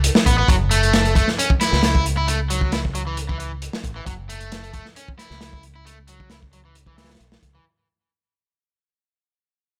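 A dry, close sound with little reverb carries this funky, energetic breakbeat cut at 134 BPM in F# minor, fading out across its whole 7.6 seconds over a single F# minor chord. A gritty, saturated acoustic breakbeat kit sits up front with a tight kick, medium-tuned snare, hi-hat and a rolled-off top, while a punchy fingered electric bass runs through an envelope filter in its low register. From 0.3 seconds a bright, crunchy picked guitar riff joins, overdriven with tube saturation, a low-pass filter and delay.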